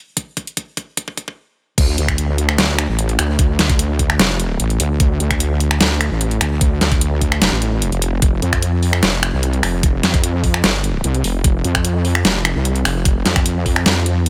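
Heavy and chaotic, this heavy wobble dubstep cut runs at 149 BPM in 4/4 with a half-time feel, sitting in D minor and taken from a longer piece. It opens with a short build-up, a drum fill and a filter sweep before the drop lands at 1.8 seconds. The dubstep drum kit sits up front, its overdriven crash cymbal, finger snaps, hi-hat and deep snare sounding layered and produced, while an electronic kick drum adds a knocking thump until it drops out at 13.9 seconds. The wobble bass enters with the drop, ranging from F1 to F2 with a detuned sawtooth and sine tone, a fast attack and sustained, saturated body, thickened by chorus and overdrive yet keeping a mellow edge. The mix is dry, with little reverb and a high-pass filter trimming the lowest end.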